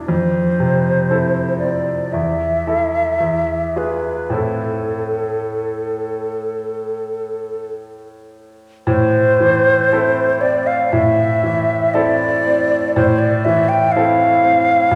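Solemn and yearning, this romantic classical duo in A minor moves at a slow, rubato 51-62 BPM in 4/4, with a bright, brilliant baby grand piano accompanying in its low and middle register while a mellow, hollow silver concert flute carries the melody from 0.1 s. The flute sits close and pure, tongued with vibrato, above the piano's open sound as the harmony passes through Fmaj7, A5/E and E to A minor, and a new section begins at 8.9 s. A wet concert hall reverb with a long 2.2-second tail places the pair further back in the room in this passage, cut from a longer piece and tuned slightly high.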